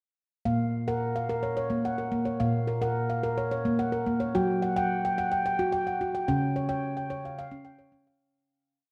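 Set in a straight 7/8 at 217 BPM counted in eighths, this brief, gentle and meditative world piece in B-flat minor features a solo handpan whose ringing nitrided-steel tones, struck with soft fingertips and close-miked up front, weave an interlocking ostinato over sustained bass notes through B-flat minor, G-flat power-chord and D-flat harmonies, all bathed in a 2.0-second echo-chamber reverb before fading out from 6.3 to 8.2 seconds.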